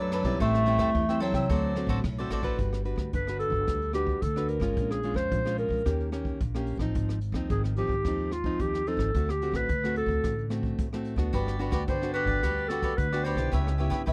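A dry, close 1970s-style studio sound with light reverb frames this lively, playful samba and choro passage, cut from a longer piece and led up front by a breathy, mellow clarinet with light vibrato and a vintage subtone. A fingerpicked, full-bodied nylon-string guitar carries the accompaniment and a woody, thumpy pizzicato upright bass holds the low end throughout. A dark, smooth brush kit adds hi-hat, boomy kick, ride cymbal and rim click, while a crisp, picked cavaquinho plays at the start, drops out at 2.6 seconds and returns at 11.3 seconds, as the harmony moves from Am7 and D7 through Gmaj7, Bbm7, Eb7 and Ab6 before coming back to Gmaj7.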